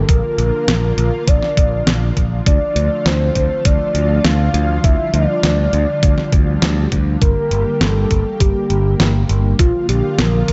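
This moody, nocturnal synthwave excerpt in D minor opens with a soft octave-layered synth lead, round and full, carrying the melody through chorus, tremolo and digital delay over a silky analog string pad with ensemble chorus and a growly picked electric bass, both breathing with sidechain pumping. From 0.1 seconds a thumpy, up-front electronic kick and a clean 12-bit drum machine with a fat snare and hi-hat set a straight 101 BPM pulse, their tape-tinged sound re-recorded in a small room. Chords move from Bb to Dm to Gm and back to Bb within a dark production and light reverb.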